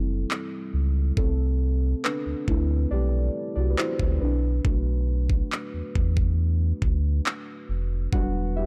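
A straight, unhurried 4/4 pulse comes from a trap drum kit that enters at 0.3 seconds, its knocking kick and handclaps sitting up front with a produced, electronic edge until 8.3 seconds. This short cut from a longer contemporary R&B piece has a late-night, longing mood. Muted, felt-like synth keys are featured throughout, soft yet full-bodied, with a sub octave, a noise layer, a filter sweep and a chorus that deepens their dark, intimate colour. Beneath them, a deep, mellow sub bass doubled at the octave holds down the low end up front, its tone round and sustained. The harmony moves from a rootless D9sus4 to C69, then Bm7, and lands on Em9 near the close, all in a dry, dusky mix with little reverb.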